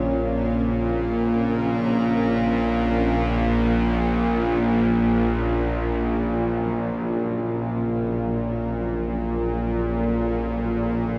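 A tense, string-like drone with a sawtooth edge sits up front in this dark ambient excerpt, its detuned, vibrato-laden tone laced with a noise layer. Behind it, a very quiet granular cloud pad holds blurred, mellow chords, while a very quiet bronze singing bowl rings with slow, metallic beating. The cavernous mood is deepened by a cathedral reverb that places everything in a vast, echoing space, as the harmony moves from Bb minor to Gb minor at 5.1 seconds.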